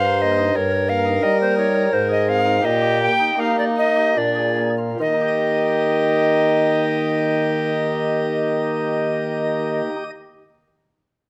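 Dance-like and flowing, this excerpt of a baroque-style sonata movement in 3/4 carries an airy, up-front tenor recorder melody with tongued chiff over a reedy, gut-string violin second line with light vibrato, a dark, distant bassoon bass, and a pipe organ's sparkling flute stops, all in close, detailed sound with light reverb, easing its pace through the first 5.0 seconds before the second section begins.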